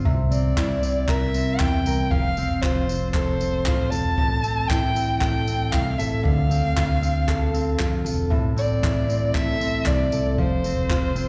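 A fingerpicked, full-bodied jumbo steel-string acoustic guitar with slapback echo and a round, amped fingered electric bass open this sunny, carefree acoustic pop excerpt at 116 BPM in a straight 4/4, joined at 0.1 s by a distant, roomy brush kit with boomy kick, handclaps and tambourine, then at 0.3 s by an up-front, dark, woody bowed solo violin with vibrato and slapback echo carrying the melody over chords moving from C7 through F, Am7 and Dm7, all heard as a live gig through the venue's PA in recital-hall reverb with a dulled top end.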